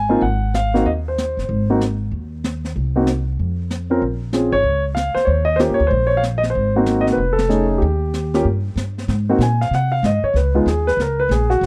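A brisk swing at 190 BPM in 4/4 drives this relaxed, sophisticated jazz piano trio fragment, cut from a longer piece, with brushes on a high-tuned snare, hi-hat and dark ride cymbal entering at 0.2 s from a small-room kit whose top end is rolled off. A woody pizzicato upright bass on steel strings sits up front beside a warm grand piano with long sustain that carries the melody over changes such as Ab7, Bbm, Eb7 and F7alt. The band hits an accent together at 7.3 s before the piano takes a solo from 9.1 s, all captured in a dry, close 1970s-style studio sound.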